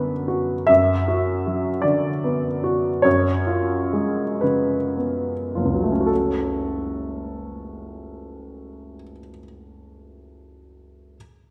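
A worn, intimate baby grand piano carries this brief fragment of a romantic character piece alone, spanning F#1 up to E5, its audible action noise sitting present and up front in the sound. The mood is brooding and bittersweet, set in F# minor in a slow, rubato 6/8 that moves at roughly 33-53 dotted-quarter beats per minute. The harmony rests over an F# bass, moving from Bm/F# to C#7/F# at 3.1 seconds as the opening phrase gradually slows. At 6.1 seconds it settles onto F#m and a new section begins. A wet concert-hall reverb with a 1.6-second decay surrounds the warm tone, placing the instrument in a church or hall space.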